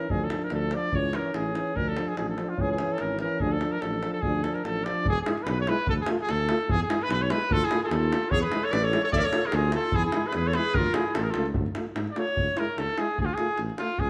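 A bright trumpet with vibrato carries the melody from the start over a mellow, distant French horn and a smooth-topped euphonium in the background, while a dark, soft-attacked tuba bass and a deep, vintage, band-limited davul push this bittersweet, restless Balkan brass band tune in swung 2/4; a clear, present clarinet adds a second line from 7.5 to 11.5 seconds before the trumpet takes a solo at 11.6 seconds, the band set in a moderate recital hall reverb in this fragment cut from a longer piece.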